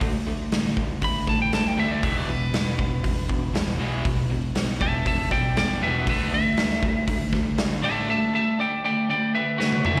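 A lightly driven lead guitar stands up front through this aggressive, heavy hard rock excerpt, its dark, slightly broken-up and compressed tone carrying the melody from 1.0 seconds with slapback echo and analog delay. Underneath, a bright, double-tracked cranked stack guitar drives out an overdriven, picked riff with its own slapback echo, moving from D5 to E5 and settling on Dsus2 by 6.1 seconds. A huge arena drum kit keeps a straight 4/4 pulse at 119 BPM, with a punchy kick, medium-tuned snare, hi-hat and toms sounding natural and big-roomed, and a drum fill arriving at 9.6 seconds. A picked electric bass, round and dark with a direct-and-amped punch, holds the low end until it stops at 8.1 seconds. The whole thing sounds like a live gig heard through the venue's PA, cut from a longer performance.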